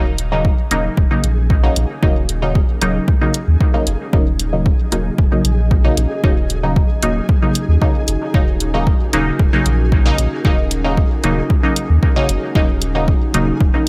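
This hypnotic, meditative dub techno excerpt opens at 0.0 s on a muted, detuned chord stab with a filtered pluck, coloured by chorus, phaser, cassette-tape grit and dub echo, over a clean, smooth sine sub bass that sits deep and dark underneath. An overdriven, layered electronic hi-hat and a punchy analog kick, both up front, set a straight pulse, with the kick carrying the most weight in the mix and sounding re-recorded in a large room. From 0.7 s a moody, warbling pad of vintage detuned sawtooth unison with a sub octave fades in slowly and hangs in the background, soaked in chorus and reverb. A flickering, grainy granular texture arrives at the same moment, holding a single mellow note far back in the mix. The pad, stab, bass and texture all pump through sidechain compression, and the whole passage rests on one unchanging minor seventh chord under a light reverb.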